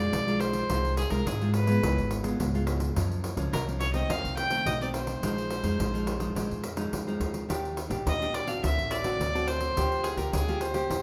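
Samba and choro at 106 BPM in a festive, sunny mood, this 11-second excerpt from a longer piece sets a clear, biting, up-front bowed fiddle on the melody over warm fingerpicked classical nylon-string guitar, a woody, thumpy pizzicato upright bass and a jingly pandeiro that enters at 0.1 seconds, all bathed in a wet large studio reverb as the chords move from Bb7sus4 through Gbmaj7 and Ebmaj7 to Gm7/D.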